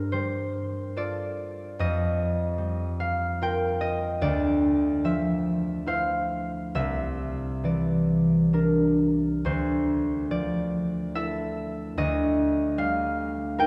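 Moving in a flexible triple metre with a rubato feel, this gentle, wistful classical passage for solo concert harp is cut from a longer piece and lasts 13.7 seconds. The harp plays alone from start to finish, fingerpicked and ringing, spanning a range from C2 up to G5. Its acoustic tone sits up front and feels warm, giving each plucked note a rounded intimacy. The harmony drifts through lush extended chords, opening on Gm9 and passing through F9sus4, Dm9 and C9 before settling toward Ebmaj7/D at 12.0 seconds. A wet church reverb with a 3.8-second decay surrounds the instrument, so the notes bloom and linger in a spacious, hall-like acoustic.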